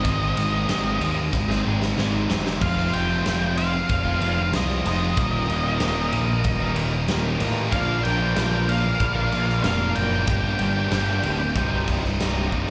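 A dark, fuzzy octave-fuzz lead guitar opens this brooding, cathartic quiet-loud alternative rock excerpt at 94 BPM in a straight 4/4, over two picked guitars, a fuzz bass and a big rock drum kit. An overdriven electric guitar sits in the background while a tight, bright distorted guitar plays the riff with it, both carrying slapback echo, as does the lead's melody between Eb5 and G5. Up front, the growly, overdriven picked bass digs deep, and the acoustic kit has a fat snare, punchy kick, crash and ride in a bright stone room, with a drum fill from 1.3 to 2.6 seconds. At 2.6 seconds a very quiet, mellow, flute-like tonewheel organ enters with clean sustained chords through a slow rotary speaker with vibrato, as the harmony moves through Ab, Fmadd9, Eb, Bb, Gm and Cm. The lead drops out at 11.8 seconds, and another fill arrives just before the cut, all captured as a live gig heard through the venue's PA with little club reverb.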